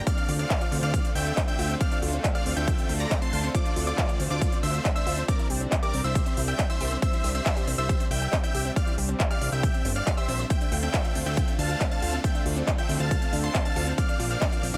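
A dry mix carries this soaring, driving uplifting trance passage in 4/4, cut from a longer piece, with an overdriven, punchy electronic kick up front beside a fat, nasal, saturated analog bass, while a big-room dance kit adds overdriven handclaps and crisp hi-hats that pump with the sidechain. A huge, euphoric supersaw lead with tape echo carries the melody over a lush, slow-attack unison pad in the background, and high above, a catchy, mellow plucky unison lead plays a second line as a round analog pluck with chorus, tape echo and a moving notch spins arpeggios. The pad, bass, leads and pluck pump against the kick as the harmony moves from Dm7 to C and back, landing on Bbadd9 at 14.0 seconds.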